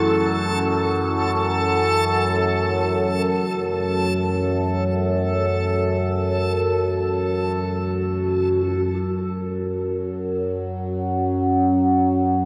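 An overtone-sweeping drone sits up front in this ominous, vast dark ambient piece, a resonant blend of sawtooth and sine whose moving overtones keep it evolving over a low F# foundation, with a slow attack, long release, chorus and built-in reverb giving it a bright sheen. Beneath it, a deep, moody pad holds sustained chords in the background, its unison sawtooth and sine layers and sub octave lending a dark weight under F# minor harmony. A reversed, swelling texture hovers up front on a single high A, its detuned triangle tone and granular grain adding a dreamy haze. The pad and the backwards texture both fall away at 8.7 s, leaving the drone on an open F# fifth, while a very quiet, detuned FM bell keeps tracing eerie, inharmonic arpeggios, its fast attack decaying into a mellow, full-bodied ring. The music floats in free time inside a wet cathedral reverb that makes the space feel immense, and this passage, cut from a longer piece, ends at 12.5 s.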